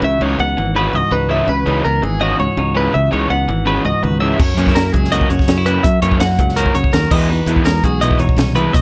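This excerpt of math rock and midwest emo opens with three electric guitars and a bass together, moving at a brisk 165 BPM in straight 4/4 with a playful, intricate mood. A twangy, compressed twelve-string electric guitar sits up front, its clean picked arpeggios ringing bright in the upper register. Beneath it, a semi-hollow electric guitar gives clean, picked accompaniment with a warm hollow-body tone. A raw garage guitar adds a lo-fi, overdriven, double-tracked riff, and a fingered electric bass holds the low end with a direct, punchy sound. At 4.4 seconds a compact cocktail drum kit joins, dry and up front, with a high-tuned snare, a punchy kick, hi-hat and dark crash cymbals, as the harmony moves from C#m11 to F#7 and then to Emaj9 at 7.1 seconds, all under a light reverb.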